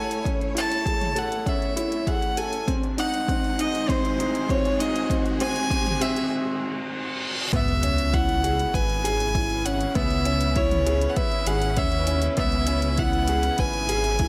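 Piano and strings electronica with a moving, hypnotic mood, taken from a longer piece: a woody upright piano riff and an up-front, earthy solo violin melody sit over lush bowed string chords that pump in the background, while an overdriven deep house kit with metallic hats and toms and a punchy electronic kick drive it along. Very quiet electronic effects (a riser, reverse cymbal and sub drop) mark a build-up that reaches a short break at 6.3 seconds, and at 7.5 seconds the drop arrives with a dark, rumbling detuned saw bass that pumps with the strings. A moderate recital-hall reverb gives the music a sense of space.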